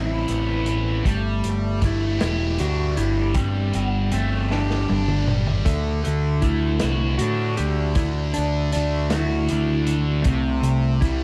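A thick, bright fuzz guitar, double-tracked and up front with distortion and a phaser, opens this mysterious, trippy psychedelic rock passage alongside a growling, round picked bass, overdriven and also up front, and a dark, slightly broken-up slide guitar played with fingerpicks. A vintage drum kit joins at 0.3 seconds, its muffled, lo-fi sound with a medium-tuned snare, tight kick and rolled-off top set in a small room. The tempo is a slow 52 BPM counted in dotted quarters, in a straight 6/8. The compressed slide guitar carries the melody through a slapback echo while the fuzz guitar holds the riff and the bass anchors the low end. Drums play a fill from 4.5 to 5.7 seconds as the harmony moves from Amadd9 and Gsus2 to D, then reaches C at 10.3 seconds, all under light reverb in a short section cut from a longer piece.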